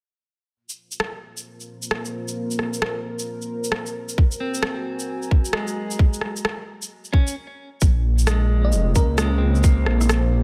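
A tape-warm, up-front electronic shaker and rim click open this wistful, melancholic future garage excerpt at 132 BPM in Bb minor, swung on the sixteenths, soon joined by a deep, moody analog pad with chorus and sidechain pumping, then a tight electronic kick and a clean, fingered electric guitar with delay around 4.2 s. After a brief stop, a menacing, detuned sawtooth bass with a filter swell arrives at 7.8 s as the harmony settles on Bbm7, and a sparkling, bell-like FM electric piano with tremolo and cassette-tape colour flickers briefly in the background. The mix is dry and close, with the drums carrying a large-room re-recorded character.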